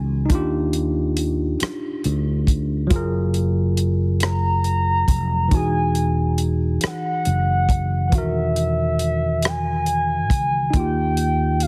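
A slow, straight 6/8 groove at 46 BPM from a damped, dry 70s drum kit of hi-hat, tight kick and rim click, entering at 0.3 seconds, anchors this warm, sensual R&B excerpt tuned to A4 = 435 Hz, where a growly, punchy fretless electric bass and a worn, slightly out-of-tune barky tine electric piano through a combo amp carry Ebmaj9, Gbmaj9 and Emaj9 chords, before a mellow, sine-like gliding portamento lead with chorus and vibrato arrives at 4.2 seconds, all set in studio ambience with a heavily compressed radio sound.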